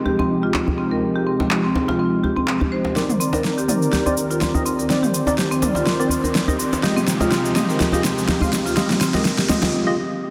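Dense, heavily limited and bathed in lush hall reverb, this driving, hypnotic afro house cut in C minor at 124 BPM opens on a detuned sawtooth pad under a filter sweep, with dark, woody marimba arpeggios through tape echo, soft-handed djembe and an overdriven, up-front deep house kit with a fat snare, cabasa, handclaps and toms; clean tine electric piano stabs join at 3.0 seconds under their own filter sweep as a drum fill carries the build-up, a background riser enters at 4.8 seconds, and a brief break arrives at 9.7 seconds.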